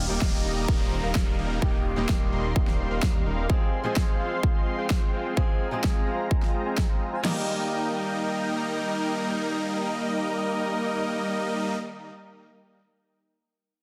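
This festival progressive house excerpt in Eb major drives at 128 BPM with an anthemic, triumphant mood, its chords moving from Eb to Fm at 3.5 seconds and back to Eb at 7.2 seconds. Huge, up-front supersaw chords carry the riff, filtered and sweeping through the opening stretch, with digital delay and sidechain pumping. Beneath them, a detuned saw bass with chorus adds a thick, mellow low end until 3.5 seconds, while a background downlifter sinks away over the same span. A big-room dance drum kit with a punchy kick, crash cymbal and overdriven snare, doubled by a layered electronic snare, hits hard before dropping out at 7.4 seconds. Throughout, a dark, boxy, fingerpicked swing-style acoustic guitar pumps with delay, and a warbling vintage pad with chorus holds slow-attack chords in the background, all set in light digital ambience within a dense, heavily limited master.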